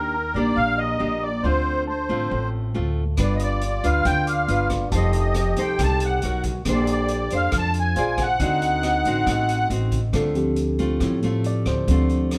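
This melancholic, smooth bossa nova excerpt opens at 138 BPM in a straight 4/4, with a reedy, shimmering musette accordion carrying the melody up front over fingerpicked classical nylon-string guitar, clean tine electric piano and woody pizzicato upright bass. The accordion has a vintage, band-limited character, while the guitar sounds full-bodied and the bass warm. At 3.2 seconds a breathy, raspy trombone joins as a second line with scooped notes and a growling jazz edge, alongside a distant, roomy drum kit of hi-hat, rim click and punchy kick with a rolled-off top. The harmony moves through rich seventh and ninth chords, from Ebmaj7 and Dm7 through G7, Bbmaj9 and D7b9 before returning to Dm7. At 10.1 seconds the accordion and trombone have dropped out, and the electric piano takes a short solo over the rhythm section as the fragment ends. Light reverb gives the feel of a band playing live together in one room.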